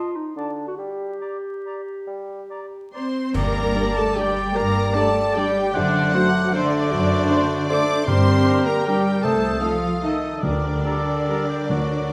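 Bittersweet and dark, this rubato orchestral ballroom waltz fragment opens with airy background flutes, a vintage-toned clarinet, a warm oboe and a roomy bassoon; strings join at 2.9 seconds, with expressive vibrato violins carrying the melody over a second violin line, clear violas and rich cellos; then a band accent at 3.3 seconds brings in lush double basses, clash cymbals with bass drum, and dry timpani, while a horn section holds sustained chords and bright trumpets add stabs, in a moderately reverberant space with vinyl crackle.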